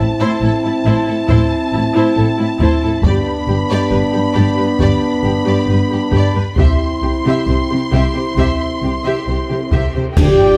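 A steady 68 BPM pulse in straight 4/4 drives this relentless, dramatic stretch of epic orchestral film score, cut from a longer piece, with a taiko ensemble entering at 1.3 seconds, struck with hard sticks and heard close and dry. Over a harmony that moves from A minor to G and then C, the violin section carries a high, lush bowed melody with vibrato, while a second violin line and the viola section, marked by portamento and a soft attack, fill in the middle. A mellow French horn section holds sustained chords up front, and beneath it an intimate, dark double bass section and an expressive cello section anchor the bass. At 6.6 seconds a cymbal swell, clash cymbals and concert bass drum join from a small room, adding shadowy cymbal color to the build-up. At 10.2 seconds the whole band lands a short accent, bringing in a clear solo trumpet stab, a mellow trombone section with a soft attack in the background and a brief tuba note, all under light reverb and detailed close microphones.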